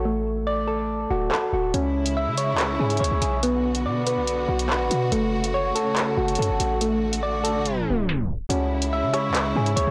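Soft, round electric-piano-like synth keys spin chorused, delayed arpeggios over a punchy, heavy 808-style bass in this cold, tense half-time drill piece at 142 BPM in C# phrygian, with a drill kit of bright hats, handclaps and rim clicks arriving at 1.3 seconds, a bowed symphonic string section holding lush sustained chords from 1.7 seconds, and a blown-out, overdriven mix bathed in hall reverb and interrupted by a tape stop at 7.7 seconds.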